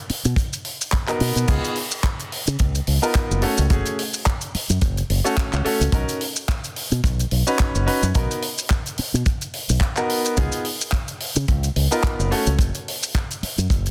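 Groovy and sunny, this nu-disco clip moves at 108 BPM in 4/4 with a light 16th-note swing, cut from a longer piece. A fingered electric bass runs through an envelope filter and sits up front with a bright, direct tone, paired with a tight acoustic kick drum that also sits forward. A tight funk drum kit with a natural small-room sound fills in crash cymbal, handclaps, hi-hat and shaker. From 1.1 seconds, a baby grand piano plays accompaniment with a brilliant, intimate character, long sustain and audible action noise, treated with sidechain pumping and digital delay. The harmony cycles through Cbmaj7, Db7, Gbm and Cbadd9, and the whole groove sits in a studio ambience with a dense, heavily limited modern master.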